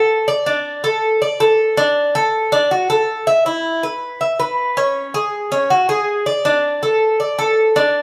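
A picked acoustic Cuban tres plays up front, its metallic double strings, some doubled at the octave, giving a sunny glow to this brief latin cut at 160 BPM in straight 4/4, heard live in a stone room with a moderate reverb.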